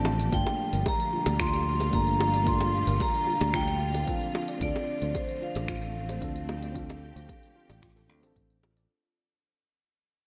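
A bright, ringing vibraphone struck with hard mallets carries the melody up front in this relaxed, smooth sunset chillout piece at 112 BPM, its notes trailed by analog delay over a warbling, chorused FM electric piano, lush bowed strings with vibrato and a soft, round pluck arpeggiating in the background with 12-bit sampler grit. A punchy electronic kick, a deep house kit of smooth hats, cabasa and finger snaps, tight high-tuned bongos and a direct, up-front fingered electric bass keep a straight 4/4 groove under chords moving from Gm7 to Dm7. The whole dreamy mix is soaked in hall reverb, and this short section cut from a longer piece fades out from 3.2 seconds to its close at 8.9 seconds.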